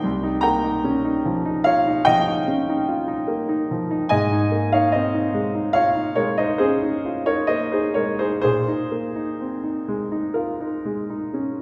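Impressionist classical solo piano, mysterious and hazy, drifting in a rubato 5/4 between 56 and 77 BPM with the instrument tuned to A4 = 438 Hz. A clear concert grand plays alone throughout, spanning C2 to C6 with a deep bass, an open character and short sustain, moving from Eb13/C to Abadd9 at 4.1 seconds and Bb9sus4 at 8.4 seconds. The piano sits up front yet is heard from further back in a recital hall with a wet 1.5-second reverb, and this fragment is cut from a longer piece.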